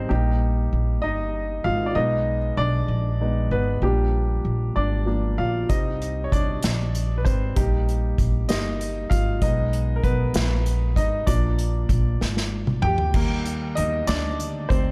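Studio reverb and a dark, warm production frame an intimate sound in this tender, heartfelt pop ballad, cut from a longer piece in Eb major at 64 BPM in a straight 6/8. A clear baby grand piano, natural and up front with audible action noise, carries the solo from the opening, moving through Eb/Bb, Abm/Cb and Bb before Cm arrives. Beneath it, an upright bass played pizzicato on steel strings gives a woody, thumpy foundation. An unplugged drum kit, played with bundle sticks in a studio room, joins at 5.7 seconds with hi-hat, crash cymbal, toms, a medium-tuned snare and a punchy kick. A drum fill from 12.2 seconds leads into a new section at 13.1 seconds, where the harmony settles on Eb.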